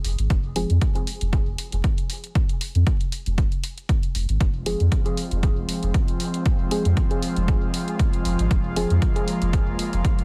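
A round, soft sub bass sits up front with sidechain pumping, anchoring this hazy, cavernous dub techno excerpt in F minor at 117 BPM with a light swing. A dry, punchy electronic kick enters at 0.3 seconds alongside a dry, analog electronic hi-hat, while a dark, nasal chord stab with chorus, phaser and dub echo flickers briefly and then returns at 4.7 seconds. An airy, breathy pad with a slow attack and detuned character rises in at 4.4 seconds, all set in a dense, heavily limited master with vinyl crackle.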